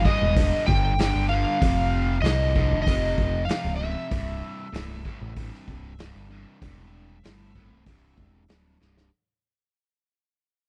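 Driving and raunchy, this 96 BPM blues rock power trio cut with a southern rock edge fades out across its short span as an up-front overdriven slide guitar, played with fingerpicks, carries the high melody over a bright, double-tracked distorted guitar riff, an up-front overdriven picked bass with a warm tone, and a vintage acoustic kit with a punchy kick, medium-tuned snare and hi-hat in a small, pumping room with a rolled-off top, all in a dry mix that closes on a drum fill at 8.8 seconds.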